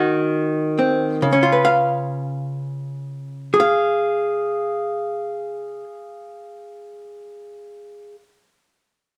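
Relaxed and playful, this short solo jazz fragment is cut from a longer piece and carried entirely by a single archtop guitar. The hollow-body electric tone is dark and clean, with a compressed, picked sound placed up front in the mix. The guitar moves through a swung eighth-note feel across a range from Ab2 up to F5. The opening 1.2 seconds slow down over an Ab7 chord before a new section arrives on Db7. A moderate studio reverb gives the instrument a gentle sense of room until the fragment ends at 8.2 seconds.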